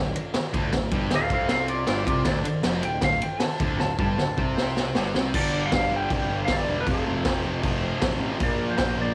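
A bright, double-tracked fuzz guitar riff drives this gritty, raw garage rock fragment, joined by a boomy, saturated drum kit with a rolled-off top, a round, punchy fuzz bass sitting in the background and a faint, buzzy combo organ holding chords, while a clean, twangy lap steel slide melody enters at 1.1 seconds, a drum fill arrives at 3.8 seconds and the organ steps out with a brief fill at 7.6 seconds, all captured as a cassette home recording with light reverb.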